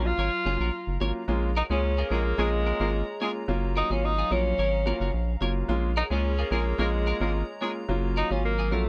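A vintage-toned tenor saxophone with vibrato and tape echo carries the melody up front in this smooth, mellow afrobeats excerpt at 109 BPM in B-flat minor, over an intimate concert grand piano with audible action noise, a deep, round analog bass, a hollow, flute-like pad with chorus in the background, and a bright, picked clean electric guitar riff with lush chorus and tape echo, while a loose horn section adds a clear second line from 1.7 seconds, all moving between Gbmaj7 and Bbm7 in light reverb.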